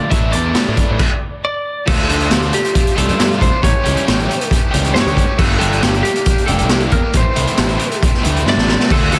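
A gritty, saturated garage drum kit sits up front in a small room, with a punchy kick and a mid-forward, medium-tuned snare, driving this cool, moody indie rock excerpt at 137 BPM in 4/4. A growly fuzz bass plays alongside two overdriven rhythm guitars, one biting and treated with lush chorus and analog delay, the other bright with harmonic tremolo. The guitars sit in the background beneath a slightly broken-up, compressed lead guitar melody carrying its own analog delay, moving through Asus4, Dm, A7, Gm and Am. The band halts briefly at 1.0 seconds before resuming at 1.9 seconds, and a drum fill arrives at 8.5 seconds, all under a dense, heavily limited master with light studio reverb and lossy compression artefacts.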